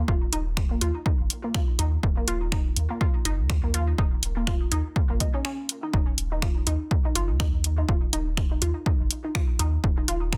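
A swung 4/4 groove at 123 BPM drives this quirky, sparse minimal techno cut in Eb minor, where an up-front, tape-warm electronic kick and a punchy analog drum machine with finger snaps, hi-hat and soft-clipped snare sit over a deep, sine-based sub bass with a pitch-drop attack and sidechain pumping, while a squelchy, resonant blip pluck riff with chorus, digital delay and a filter sweep darts through a dry, dense, heavily limited mix, pausing for a short break at 5.4 seconds.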